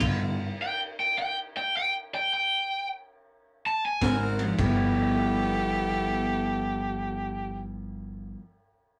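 A bright, overdriven stack guitar carries the melody up front through a stop-time opening in this soulful, swaggering electric blues shuffle excerpt, as the band hits together at 0.0 seconds and then drops out. At 4.0 seconds the full group returns: a twangy, slightly broken-up guitar riff from a small old amp, woody pizzicato upright bass, tight close-miked saxophone section stabs and a dark, gritty breakbeat kit with a high-tuned snare. From 4.6 seconds an amplified, overdriven harmonica steps forward as a solo second line, full of vibrato, tongue slaps and scooped notes, all within a rough rehearsal-room sound with a small room's reverb and saturated warmth.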